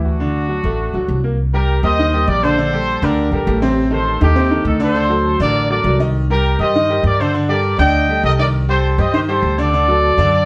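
A clear, tight trumpet section with vintage vibrato carries the melody over bright, brilliant upright piano and a woody, growly pizzicato upright bass, all three playing from the very start in this driving, danceable Latin excerpt at 201 BPM, moving through chords such as D7, Cm7 and Adim in a wet studio room heard from further back.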